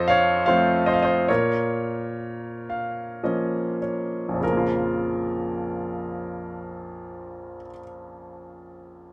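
A bright grand piano opens this wistful, dark classical fragment in Bb minor, playing alone in a rubato 3/4 at 48-80 BPM, its intimate, up-front sound carrying audible action noise and long sustain in a moderate studio reverb as it moves from F to Bb minor, slows through the opening 4.4 seconds, and adds a fill from 2.2 seconds.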